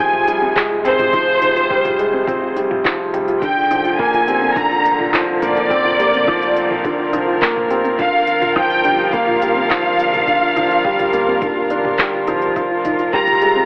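A clear, lush symphonic violin section carries the melody up front, its intense vibrato trailed by tape echo, in this moving, melancholic piece of piano and strings electronica at 105 BPM in F dorian. Beneath it, a felt-muted upright piano plays a mellow, intimate riff with audible action noise and short sustain, also touched by tape echo. A distant string quartet holds smooth, bowed chords with light vibrato, while a very quiet, soft pluck traces arpeggios with a chorused, full-bodied tone. A deep house drum kit with handclaps, smooth hi-hats and toms, joined at 0.6 seconds by a layered electronic kick, sits in studio reverb alongside a dark, round analog bass that pumps under sidechain in the background. The whole passage, cut from a longer piece, moves through Fmadd9, Bbadd9/F and Gm7 inside a moderate echo-chamber ambience with a telephone-like sound.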